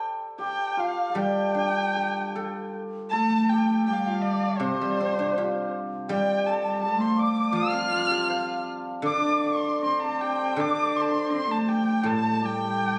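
A rubato pulse in 2/4, hovering around 75-84 BPM, gives this graceful, pastoral Chinese chamber ensemble piece a gently flexible sway in the G shang mode, tuned to A4 = 444 Hz. A shimmering, ringing hammered dulcimer opens the fragment, cut from a longer piece, and the dark, woody erhu enters at 0.4 seconds to carry the melody up front with vibrato and portamento. At 1.1 seconds the guzheng adds a silvery, fingerpicked accompaniment, also placed forward. The second section begins at 3.1 seconds, when a very quiet, reedy large dizi with a buzzing membrane and crisp attack joins alongside an intimate, boxy cello whose airy bow and soft attack add the fullest level of the group. The sound carries a moderate recital hall reverb layered with club reverb and compression, with the roomy character of a phone recording.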